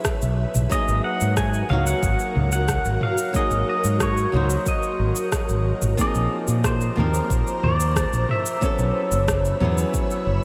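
A smooth, blissful sunset chillout excerpt in which a round, dark fretless electric bass sits up front beneath a deep electronic kick and a tape-warm deep house kit of cabasa, rim click and toms, while a fingerpicked flamenco guitar with finger squeak and tape echo accompanies an ethereal, detuned pad of sustained chords with tremolo and ensemble chorus, and from 0.7 seconds a bright, twangy pedal steel guitar carries the melody with slide and volume swells through lush chorus and analog delay, the whole dreamy mix soaked in a huge ambient reverb.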